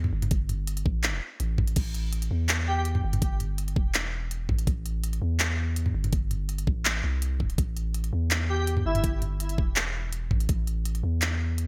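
A half-time 4/4 pulse at 165 BPM drives this dark, spacious drum and bass excerpt in A minor, where an overdriven, knocking electronic kick and an up-front industrial kit of crisp hats, handclaps, toms and crash cymbal sit over a deep, tube-saturated 808-style sine bass, while an airy, dreamy detuned lead with chorus, vibrato and digital delay drifts in only briefly at 2.7 and 8.5 seconds, all framed by light reverb and bright 1980s-style digital production.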